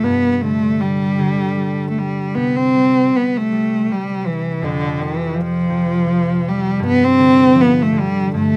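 This rough home demo carries a light reverb, with a bowed solo cello placed close and up front. It's a nostalgic, pastoral Celtic slow air in 3/4, moving freely in rubato at around 76-84 BPM and tuned to A4 = 438 Hz. The cello sings the melody between D3 and C4 with a clear, smooth, even tone and vibrato. Underneath, a fingerpicked concert harp plays a softer, ringing accompaniment in a lower range, from F2 to G3. The harmony moves from G5 to C5 at 2.4 seconds, then to F5 at 4.6 seconds, before returning to G5. Both instruments play together throughout this brief 8.6-second cut from a longer piece.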